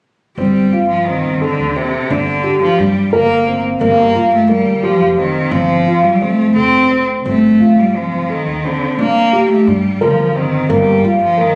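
Captured on a phone in a recital hall with a moderate reverb, this clip of contemporary chamber music moves in a hypnotic, urgent 5/8 at 175 BPM in G minor, tuned to A4 = 436 Hz. Up front, a single bowed cello carries the melody with a rich, nasal vibrato, while a dark baby grand piano rolls arpeggios with its action noise audible and a pizzicato upright bass adds a woody, growly low line, all three entering together at 0.4 s. The harmony circles through G minor colours such as Gmadd11, Gm7 and Gm11, with F9/G and Fadd9 chords between them.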